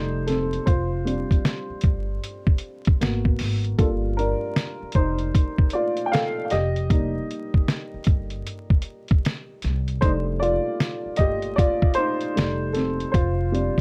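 Vinyl crackle and light reverb frame this reflective, melancholic lo-fi hip hop piece at 77 BPM with a 16th-note swing, where a dark, mellow upright piano, treated with cassette tape, a low-pass filter and plate reverb, sits up front and carries the lead through chords such as F9, Abm9, Gm9 and F13, while a woody pizzicato upright bass holds the low end and a compressed, pitched-down, muffled sampler-style drum kit with a thumpy kick and fat snare enters at 0.3 seconds.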